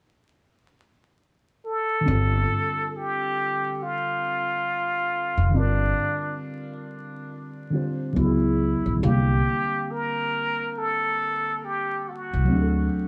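A plunger-muted trumpet leads this melancholic, reflective hip hop excerpt, entering at 1.7 seconds with a breathy, wah-wah tone, light vibrato, soft attacks and scooped notes in a vintage jazz style, sitting up front and softened by a low-pass filter and analog delay. Just behind it, muted felt-like synth keys arrive at 2.0 seconds, dark and full-bodied, their fast-attack, decaying notes blurred by chorus and cassette tape character. An upright bass joins at 2.1 seconds, plucked on gut strings with a woody, thumpy sound placed close to the listener. The tempo is a slow 69 BPM in 4/4 with a swung sixteenth-note feel, and the harmony moves from Gm9 through Dbm7 and C5 to D7. Moderate studio reverb and a bed of vinyl crackle give the recording a dusty, intimate atmosphere.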